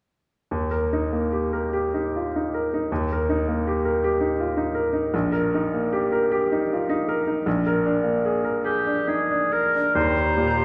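Classical romantic music for piano and orchestra, this lush, passionate passage is cut from a longer piece and moves in a flexible rubato triple metre at around 65-83 BPM in E-flat major. A brilliant, up-front baby grand piano carries the melody from 0.5 seconds, ranging from Bb1 to Bb4 over harmony that settles on Eb, shifts to Eb/Bb and leans on Bb7 before resolving home to Eb at 10.0 seconds. An oboe with light vibrato joins at 8.6 seconds as a second line, sounding distant and roomy yet placed forward. In the closing moments an airy silver flute holds a high Bb5 with expressive vibrato and lifted highs, while a mellow clarinet sits in the background and a soft-edged bassoon sustains G3 beneath. The whole passage blooms in a church or concert hall with a wet scoring stage reverb of 1.6 seconds.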